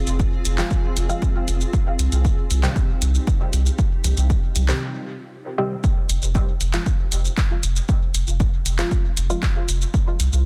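A straight 4/4 pulse at 117 BPM drives this deep, hypnotic dub techno excerpt in F minor, where a punchy, up-front electronic kick and a tape-warm analog drum machine of handclaps, hi-hat and shaker, both re-recorded in a large room, sit over a round sine sub bass that pumps to the sidechain, while muted, detuned sawtooth chord stabs coloured by chorus, phaser, 12-bit sampler grit and dub echo move between Fm and Cm, a blurred, evolving granular cloud pad with its own reverb drifts alongside until 4.8 s, very quiet overdriven congas add a layered edge, and the mix is pressed into a dense, heavily limited modern master with little reverb.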